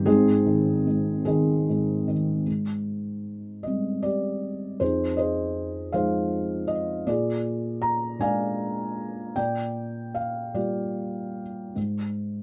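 A felt-muted upright piano plays alone in this short cut from a longer classical piece. Its thick felt gives a soft, intimate tone with audible action noise, placed up front through close, detailed microphones and light reverb. The dark, reflective solo moves in 6/8 with free rubato, opening on Ab before a second section at 2.5 seconds passes through Abmaj7, Fm7, Bb7 and Gm7/Bb, and the chords fall away at 11.8 seconds.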